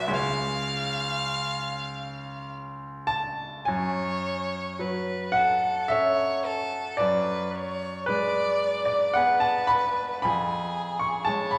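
Melancholic and yearning, this short excerpt from a longer romantic classical piece for violin and grand piano unfolds slowly in 3/4 at roughly 50-58 BPM, its rubato feel letting time stretch and breathe in F# minor. A single bowed violin carries the melody in a focused, rich voice with vibrato, sitting up front and moving within a compact span around the middle of its range. The grand piano accompanies across a far broader register, its tone bright, brilliant and polished, with an intimate presence that lets the faint sound of its action come through. After opening on C#, the music settles on F#m at 3.7 s, then passes through G#m7b5 over F# before turning to C# over E# near the close. Both instruments sound together from the first moment to the last, framed by a lush recital-hall reverb in what sounds like a church or concert hall, with the tuning set slightly below standard at A4 = 439 Hz.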